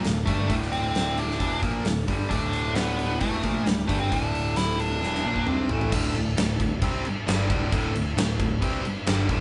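Heavy and driving, this hard rock excerpt in D minor at 133 BPM pairs a huge, punchy arena drum kit and a bright, tight distorted guitar riff up front with a sludgy overdriven guitar in the background until 5.9 s, a growly picked bass, a very quiet tonewheel organ holding chords through slow rotary speaker and chorus vibrato, and a nasal lead guitar with a parked wah carrying the melody from 0.3 s to 5.7 s, before a drum fill shifts the Dm groove to a D5 section at 5.9 s, all played live in a stone room with moderate reverb.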